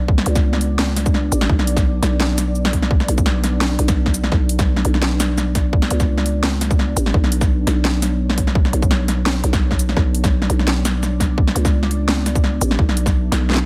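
Tense and cinematic under light reverb, this half-time drum and bass excerpt at 170 BPM in B minor sets a hard-clipped electronic kick and an overdriven, layered kit of cracking snare, bright hi-hats and shaker up front over a growling, buzzy 808-style bass, while a deep, warbling, detuned pad with chorus and sidechain pumping holds a Bmadd9 chord in the background from 0.0 to 13.7 seconds.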